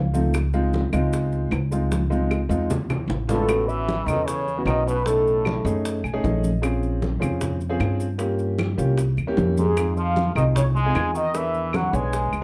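Sunny and sophisticated, this excerpt of Afro-Cuban jazz moves at a straight 153 BPM in 4/4, with a dark, warm production and a moderate large-studio reverb. An upright piano with a woody, long-sustaining tone sits up front, comping rich harmonies such as Dbmaj9, A6 and Fm7 and adding short fills. Beside it, a thumpy, bright pizzicato upright bass with steel strings anchors the low end. Underneath, low-tuned congas with a thick skin, tight high-tuned bongos and vintage, band-limited claves stay in the background, while grainy maracas sound close and dry, and a percussion fill runs from 1.9 to 3.5 s. The melody arrives in short phrases, with the main one entering at 3.3 s and another at 9.6 s, carried by a mellow, horn-like synth lead with a soft attack, detuned sawtooth character, filter sweep, vibrato and chorus. A buzzy, thin trombone with a metal mute plays a second line beneath it in the same spots.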